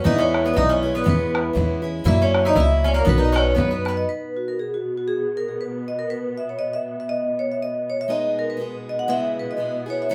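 A swung 2/4 pulse at 119 BPM drives this rollicking, bright Celtic polka, a short cut from a longer piece that moves from E through C#m/E and F#7 to B. A metallic, ringing vibraphone struck with medium hard mallets carries the melody up front throughout, its fast motor vibrato shimmering over a picked Irish bouzouki with double strings on a second line, a boxy parlour steel-string guitar with fresh strings and audible finger squeak, a woody pizzicato upright bass, and a damped, tight bodhran with a vintage, band-limited tone. At 4.0 seconds the bouzouki, bass and bodhran drop away, and a dark, veiled string section, muted con sordino and bowed with soft attack, settles in as a distant, lush drone beneath the vibraphone. The guitar rejoins at 8.1 seconds as the harmony turns to G#m and C#m7. The band plays live in one room, wrapped in a wet studio reverb.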